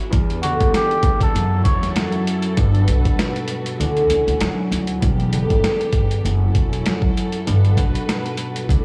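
Boom-bap hip hop at 98 BPM in E dorian, this tough, moody fragment of a longer piece rides a lightly swung 16th-note groove over Em7, F#m7, Gmaj9 and Dmaj9 chords. Up front, a gritty, compressed sampler-style kit pairs a thumpy kick with a medium-tuned snare and hi-hat, overdriven and re-recorded in a small room, while a woody pizzicato upright bass with tube saturation anchors the low end. A thumb-plucked concert harp rings out low accompaniment through a cassette-tape haze, and a bowed studio string section holds soft, intimate sul tasto chords with vibrato and a smooth top. At 0.4 s a cup-muted trumpet offers a brief, veiled jazz phrase with light vibrato and tape echo, ending by 1.9 s. The kick drops out from 3.8 to 5.0 s, and the whole mix sits in a blown-out, overdriven sound with vinyl crackle, light reverb and small-room ambience.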